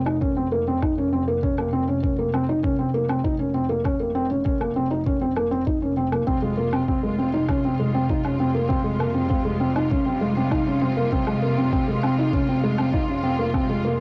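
Moving and hypnotic, this short piece of piano and strings electronica sits in F minor at 99 BPM in a straight 4/4, cut from a longer work. A felt-muted upright piano carries the riff up front, its mellow, dark tone softened by thick felt, a low-pass filter and tape echo, with the action noise of the instrument clearly audible. Beneath it, a bowed double bass section holds a smooth, even low F with gentle vibrato, colored by transformer saturation and a sidechain pumping that ties it to the beat. A muffled, thumpy electronic kick, pitched down and overdriven, anchors the rhythm alongside a quieter electronic woodblock that is also overdriven. At 6.3 seconds a lush symphonic string section enters with rich, bowed sustained chords as the harmony moves from Db/F to Fmadd9. The intimate feel comes from a moderate booth ambience and a home cassette recording that lends tape grit to the piano, drums and strings.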